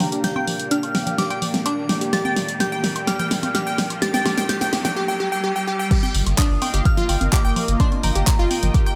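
A crystalline wavetable pluck arpeggiates through this expansive, bittersweet progressive house excerpt in G minor at 127 BPM, its up-front arpeggios opening under a filter sweep with chorus, digital delay and sidechain pumping. A glassy FM bell melody rides above, while a thick, detuned unison pad holds sustained chords through chorus and phaser, and a deep house kit with a fat snare, claps, hats and crash plays a drum fill alongside background congas and woodblock as a riser builds. At 5.9 seconds the drop lands with a deep, tape-colored kick up front, and from 6.1 seconds a round, nasal analog bass pumps on a low G, all set in a lush hall reverb.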